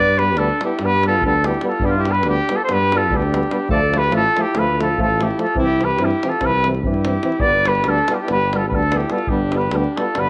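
A mellow, roomy trumpet carries the melody up front from the first moment, shadowed by a clear alto saxophone second line with vibrato and slapback echo, while a bright trombone and a distant euphonium add background accompaniment and a close-miked tuba anchors the bass. A deep davul joins at 0.2 seconds in a small-room sound, driving this wild, exuberant Balkan brass band excerpt in a straight 9/8. The harmony moves from G to Dm at 3.7 seconds, then C and back to G, all bathed in a wet spring reverb.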